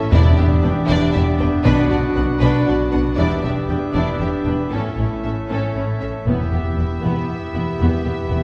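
A pipe organ on foundation stops lays down thick, romantic chords with a French horn section from the start, while strings join at 0.1 s: a distant, lush violin section carries the melody over a focused second violin line, intense violas, and bowed cellos and double basses holding the low end. This relentless, dark cinematic excerpt moves at 118 BPM in 3/4, in E dorian, cycling through Em7, Bm and A before settling on Em. Timpani struck with hard mallets sit in the background from 0.1 to 2.4 s and return at 6.3 s, all heard from further back in a wet scoring-stage reverb.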